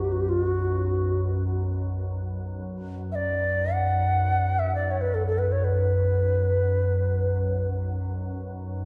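Meditative and spacious, this short fragment of a longer piece is world meditation music that floats in free time. A reedy cedar flute in the Native American style carries the melody up front, its woody, pure tone shaped by tongued notes and vibrato, with tape echo trailing behind each phrase. Beneath it, a soft additive pad lays down a low, organ-like drone with a slow attack and long, sustained tones. The pad has a vintage, warbling character from its ensemble chorus and a bright edge inside its own built-in reverb. Both parts sit within a wet church reverb and a dark, warm production, and the flute falls away at 7.7 seconds while the drone rings on to 8.9 seconds.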